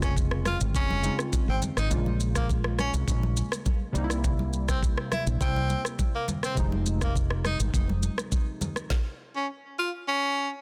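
This smooth, hypnotic afrobeats excerpt in F minor opens at once with a bright tenor saxophone playing a jazz-style solo melody over glassy digital keys, a woody fretless electric bass and an electronic afro-pop drum kit, moving at a straight 103 BPM in 4/4. The saxophone sits up front with vibrato and scooped notes, touched by tape echo. The keys add detuned, sine-like, wave-folded chords with a filter sweep, a fast attack and chorus. Underneath, the bass is dark, round and punchy, while the up-front kit knocks with a produced kick, snare, rim click and shaker. Congas join at 0.5 s, thick-skinned and saturated with hard hands, staying in the background. The harmony moves from Dbmaj7/F through Bbm7 and C7 to Fm7; the bass stops at 8.1 s and the saxophone carries on until 10.5 s in a dry, dense, heavily limited mix.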